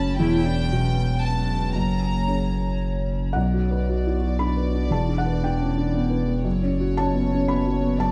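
A reflective, fragile excerpt of neoclassical piano and strings in B minor, moving in a rubato 3/4 at 116 BPM through chords such as Emadd9, F#, Bm and F#sus4. A felt-muted upright piano sits up front with a mellow, intimate tone and audible action noise, accompanied by a saturated sine sub bass, while a rich violin section carries the floating sul tasto melody through tape echo. Beneath them, a woody solo cello with vibrato plays a second line, and a warbling, detuned lo-fi pad holds nostalgic sustained chords with chorus, all in a moderate studio reverb.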